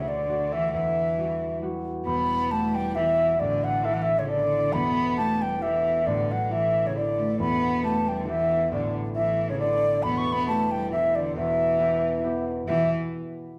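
Set in a wet, roomy studio reverb with the band playing live together, this spirited, wild Celtic folk waltz in E minor moves at 136 BPM in a lightly swung 3/4, led by an up-front, reedy baroque flute with tongued, vibrato-laden phrasing, alongside an intimate, close cello second line bowed sul tasto with a soft attack and an airy tone, and a ringing, thumb-plucked concert harp accompaniment, its chords circling between Em and Asus4.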